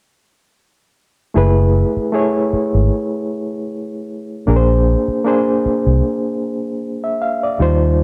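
A dark, lightly reverberant production frames this brief cut from a longer lush 1970s-style soul piece, tuned to A4 = 436 Hz. The mood is cinematic and bittersweet, moving at an unhurried 77 BPM in 4/4 with a gentle 54% swing on the sixteenths. An overdriven reed electric piano enters at 1.3 seconds, reedy and barky with a gritty edge, its fast tremolo pushed through a combo amp and placed up front as accompaniment. At 1.4 seconds a vintage muted fingered electric bass joins, round and foam-muted with an amped, up-front presence, holding the low end between F#1 and D#2. The harmony rests on F#m11 before shifting to A#9 at 4.5 seconds.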